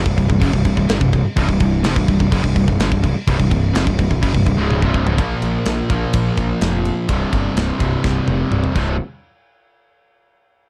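A dark, heavy production with light reverb frames this aggressive heavy metal excerpt, cut from a longer piece, in a straight 4/4. A sludgy, double-tracked distorted guitar sits up front, pounding out an overdriven riff on C5 and Bb5 chords. Beneath it, a bright, growly fuzz bass adds grit, while a tight studio drum kit with a tight kick and medium-tuned snare drives the groove, marking drum fills at 4.7 and 8.0 seconds before the band drops out at 9.0 seconds.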